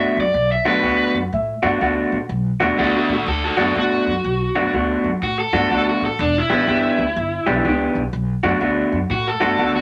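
Swung eighths at 123 BPM in 4/4 carry this brooding, mournful B minor blues fragment, where a thumpy gut-string upright bass plays pizzicato beneath a compressed, slightly broken-up, lo-fi electric guitar riff from a small old amp, a dark, mellow upright piano adds a brief second line from 1.3 to 2.2 seconds, and a raw, overdriven garage guitar sits up front with the melody that turns into a solo from 2.3 seconds over Bm7, Em7 and back to Bm7, all set in a moderate studio reverb.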